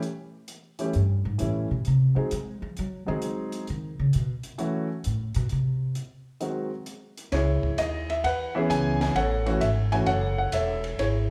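Jazz piano trio in C# minor at a swinging 131 BPM, late-night and smoky, cut from a longer piece, where a soft, dark cocktail kit of hi-hat, ride, punchy kick and high-tuned snare sits behind an up-front, woody pizzicato upright bass that takes a solo until 7.3 seconds, while an intimate concert grand with audible action noise and deep lows carries the melody, all set in a large studio reverb with the feel of a band playing live in one room.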